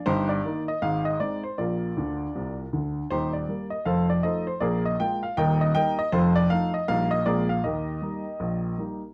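A swinging 4/4 pulse at 158 BPM drives this short, exuberant stride piano excerpt in Eb major, with the eighth notes lilting in a clear jazz swing. A lone baby grand carries everything, spanning from a deep Eb1 up to G5 and sitting up front in the mix with a worn, present tone and long sustain. Around 2.0 seconds the piano slips in a brief fill before the harmony settles back on Eb at 3.1 seconds. The changes move through Eb/G, Ab and Bb, then cycle between Eb and F7 before a Bb9 turns the phrase home to Eb at 7.7 seconds. A moderate studio reverb and a dark, warm production give the whole performance a cozy, intimate glow, as the passage is cut from a longer piece.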